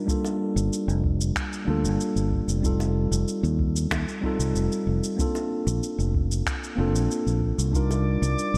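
Sunset chillout at 94 BPM in a straight 4/4, wistful and smooth, where an up-front, mellow tine electric piano with diffuse ambient delay moves through Gm9, F9, Bbmaj9 and Cm11 over a deep analog-style electronic kick, gritty compressed shaker and finger snaps, tight high-tuned bongos in the background, and a direct, amped fingered electric bass entering at 0.6 seconds, before a glassy, drifting glass-harmonics texture with chorus and reverb appears at 7.9 seconds in this short cut from a longer piece.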